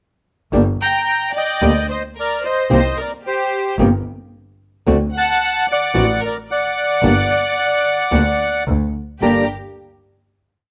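Tango with a tense, melancholic air and a rubato feel, moving through Gm, Cm7 and D7 back to Gm before a brief break and a final Gm chord at 9.2 seconds. A reedy bandoneon carries the motif-based melody in period phrases, partly doubled in thirds, while a clear studio violin section bows a vibrato harmony line mostly in thirds. Up front, a fingerpicked acoustic flamenco guitar plays short tango chords and a focused, bowed double bass marks the tango rhythm marcato in two, captured with close, detailed microphones and light reverb.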